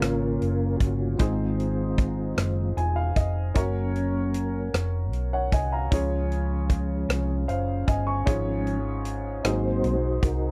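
Reverent yet jubilant, this slow gospel piece in 6/8 at 51 BPM in Db major features a mellow, flute-like tonewheel organ soloing through fast rotary speaker and chorus vibrato with audible key click, over a woody, slightly detuned upright piano that adds a fill from 2.4 to 3.6 seconds, a dark, round hollow-body electric bass, and a natural country drum kit of punchy kick, hi-hat and rim click, all captured in a dry, close 1970s-style studio with light reverb as the chords move from Bbm through Gb and Db to Ab7.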